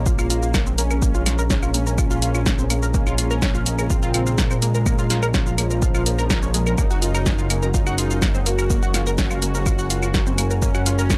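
A dry, gritty hardware sound with transformer saturation frames this cinematic, hypnotic melodic techno excerpt in Bb minor at 125 BPM, where a punchy kick re-recorded in a small room and a drum machine of snare, hi-hat, claves and shaker drive a fat, wave-folded bass up front, a tight sequenced synth with 12-bit sampler grit and tape echo spins arpeggios, a thick unison lead sings a vibrato melody in the background beside nasal synth brass stabs and a deep, moody pad, all pumping against the kick over a Bbm7 that turns to Gbsus2 at 6.8 seconds, with a barely audible sub drop under the opening second.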